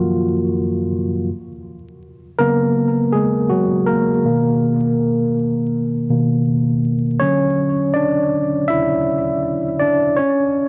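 Cosy and mellow, this short hip hop fragment at 81 BPM with a lazy 16th-note swing features a lone tine electric piano, worn, slightly out of tune and sitting up front as if through built-in speakers, drifting from F#6 through C#7sus4, Bmaj7 and Dmaj9 under cassette tape wear, a low-pass filter, analog delay and a moderate plate reverb, all wrapped in vinyl crackle and warbly pitch drift, with nothing above 10.6 kHz, until it ends at 10.7 seconds.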